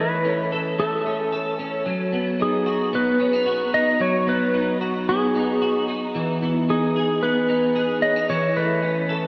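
A twangy, compressed lap steel sings up front with slide and volume swells through a floating, blissful dream pop fragment in A lydian at 112 BPM, over a picked electric guitar whose clean arpeggios ring with ensemble chorus, both parts bathed in shimmer reverb and tape echo inside a lush hall as the chords move from Aadd9/E through B/F#, G#m7 and Emaj7 before returning to Aadd9/E.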